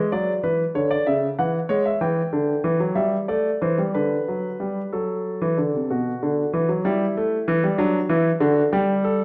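A warm concert grand piano carries this short, stately and joyful baroque-style two-part invention alone, sitting up front with a deep bass and long sustain across a range from B2 to G5. Moving in a straight 6/8 at 63 dotted-quarter beats per minute, the harmony travels from D through C#m, Em and a Dsus4 before a second section at 5.9 seconds turns to Bmadd11 and A5/G and returns to D. A recital hall reverb with a 1.6-second decay surrounds the playing in this fragment cut from a longer piece.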